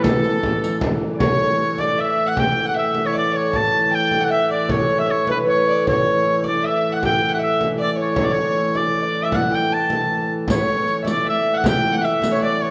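A dark, reverberant hall sound frames this rustic, festive medieval dance in A mixolydian at 155 BPM in a straight 3/4, cut from a longer piece, where a bright, vibrato-laden shawm with scooped notes and soft attacks carries the folk-style melody up front over a dark, woody hurdy-gurdy drone, while a biting, earthy fiddle and a very quiet, mellow fingerpicked harp play second lines, a deep, distant frame drum keeps the pulse, and a band-limited riq adds bright jingles only from 0.0 to 0.8 seconds and again from 10.5 seconds.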